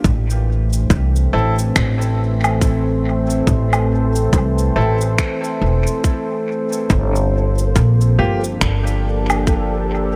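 A dry, close-sounding fragment of meditative, hazy ambient dub at 70 BPM with a swung 16th-note feel, where a warbling, detuned analog pad with chorus holds sustained chords from Am to Gm7 at 6.9 seconds over a woody, thumpy pizzicato upright bass and a tight, tape-tinged electronic kick up front, while electronic cabasa, finger snaps and woodblock carry dub echo, a clear, polished upright piano adds echoing stabs from 1.3 seconds, and a bubbling, resonant stepped-filter texture drifts in the background from 7.6 seconds.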